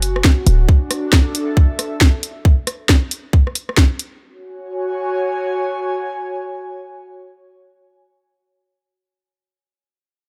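Lightly reverberant, this soulful, bouncy, swung two-step UK garage fragment opens with a punchy, sine-based 808-style bass hit that stops at 0.7 s and a layered garage kit of cracking snare, hi-hat and rim click in a small room that plays until 4.1 s. An up-front, tight, overdriven electronic kick joins at 0.2 s and runs to 3.9 s, while an airy, breathy pad with chorus and sidechain pumping sustains over Dmaj9 and then F#sus2 through to 8.0 s.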